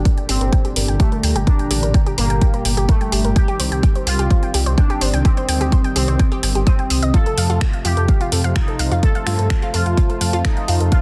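A dense, heavily limited modern master with light reverb frames this dark, melancholic slice of melodic techno, cut from a longer piece and driven by a straight 4/4 feel. A punchy, tape-warm electronic kick sits up front, joined by a house drum kit of finger snaps and hi-hat, both re-recorded in a large room, with soft clipping on the snare. Underneath, a rumbling detuned saw bass with a saturated, beating edge pumps with sidechain compression, while a smooth, warbling vintage pad holds sustained chords in the background through a Gm, Cm and F progression. A juicy, resonant polysynth carries the melody with ring modulation, chorus and delay, and a round analog pluck spins arpeggios through chorus and delay, a filter sweep moving across it for the full 11.0 seconds. Entering at 0.2 seconds, a moody, evolving ambient pad with a sub octave and its own reverb adds a mellow, slow-blooming texture high in the background.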